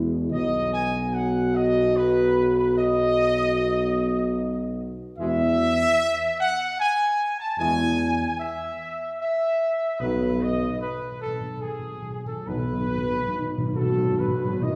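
A mellow trumpet section carries the melody up front from 0.3 seconds, its soft attack and light vibrato giving this regal, solemn classical passage a dignified voice in triple metre. Beneath it, the French horn section holds sustained chords in the background, while a very quiet, clear trombone section adds tight, lightly vibrating chords of its own. A close-miked tuba with a soft attack anchors the bass until 13.2 seconds. At 10.0 seconds the timpani enter with a round, close and dry fill played with soft mallets. The harmony moves from B to E and back to B, and the brass sit in a wet recital hall heard from further back in the room, in a short cut from a longer piece.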